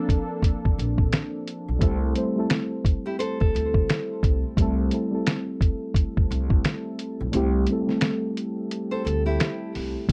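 A muffled, pitched-down sampler drum kit with a thumpy kick and fat snare sits up front in this hazy, reflective lo-fi hip hop excerpt, alongside muted, felt-like synth keys with chorus, a growly pizzicato upright bass, a smooth, detuned analog pad heard briefly at the start, and fingerpicked nylon-string guitar phrases with analog delay and plate reverb from 3.1 seconds, while the kick falls silent at 7.3 seconds in a dark, dry mix.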